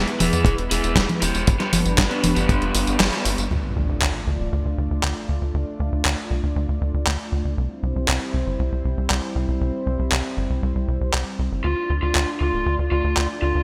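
An overdriven electric lead guitar, picked through a small cranked amp with digital delay and a lo-fi edge, carries the melody up front in this sunny, danceable italo disco excerpt at 118 BPM, playing during the opening seconds and returning at 11.6 seconds. Beneath it, a punchy sawtooth sequencer bass with a plucked filter drives steadily, while a mellow analog pad with chorus sustains smooth chords moving from E and G to Dm and C. A tape-flavored 8-bit drum machine with gated reverb supplies congas, handclaps, hi-hat, snare and tambourine, a dry, tight acoustic kick drops out as the band accent hits at 3.0 seconds, and an electronic impact sounds faintly in the background as the second section begins, all in bright 1980s-style digital production.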